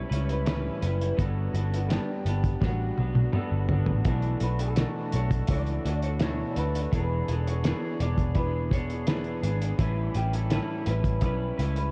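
A straight 4/4 pulse at 84 BPM carries this mellow, wistful slice of bedroom indie pop in B minor, set by a cloth-damped, thuddy drum kit with a fat snare, a tight kick and gritty sampler crunch, plus a fill from 2.6 to 4.1 seconds. Up front, a round, foam-muted picked bass sits low beneath a twangy, slightly broken-up accompaniment guitar with subtle chorus and vibrato. Over it, a lo-fi lead guitar from a small old amp sings through lush chorus and analog delay across chords drifting from A9 through Gmaj7, Bm11 and E7, all wrapped in light reverb and cassette-tape haze.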